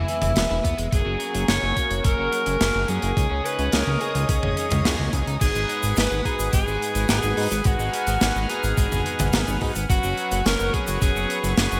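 A straight 4/4 pulse at 107 BPM drives this nocturnal, moody synthwave excerpt, cut from a longer piece, with a big rock drum kit of bright cymbals, hi-hat, shaker, medium-tuned snare and toms sitting up front in gated reverb, and an electronic, thumpy sampler-style kick joining at 0.6 s. Underneath, a fat, detuned sawtooth analog bass holds the low end, while a shimmering chorused pulse-width pad with a slow attack and long release carries sustained chords that pump against the sidechain. A clear tenor saxophone takes the solo melody in a vintage pop style, with scooped notes and a digital delay trailing behind it. In the background, a double-tracked overdriven electric guitar picks a riff through analog chorus and delay, and dark, brassy synth stabs with vibrato add weight. The harmony moves from E through F#add9 and C#sus2, settling into G# dorian at 5.4 s on G#m7 before reaching F#sus4, all framed by a lush hall reverb and bright 1980s-style digital production.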